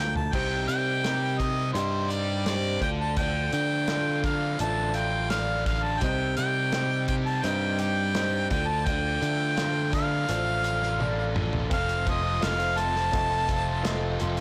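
A brief gritty electric piano fill with fast tremolo opens this dusty, wistful folk-rock and heartland-rock excerpt, as a clear, up-front harmonica with light vibrato carries the melody over growly picked electric bass, a biting double-tracked overdriven guitar riff, a woody, boxy acoustic archtop in the background, and a punchy small-room country drum kit, all within a blown-out, overdriven recording, with the harmonica, electric piano and archtop sitting in plate reverb, as the Cm and Dm chords alternate until a drum fill at 11.0 seconds leads to a shift to F at 11.7 seconds.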